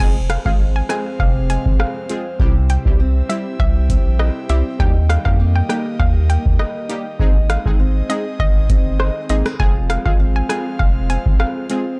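A straight 4/4 groove at 100 BPM drives this bouncy, tough dancehall cut in F minor, built on a booming analog drum machine with a deep kick, metallic hats, crash cymbal and rim click, sitting up front in the mix. Beneath it, a round sine sub bass holds F1 to F2 just as prominently until 11.4 seconds. A hollow, nasal square-wave pluck carries the melody between C5 and Ab5, thickened with chorus and tape echo, while punchy, detuned brass stabs with a filter sweep and chorus fill in the accompaniment. A fingerpicked acoustic archtop guitar adds boxy arpeggios with finger squeaks and tape echo, and an airy, breathy pad enters at 0.4 seconds with a slow attack, chorus and sidechain pumping. The chords cycle through Fm, C, Eb and Ab before returning to Fm, all in a dry, dark production.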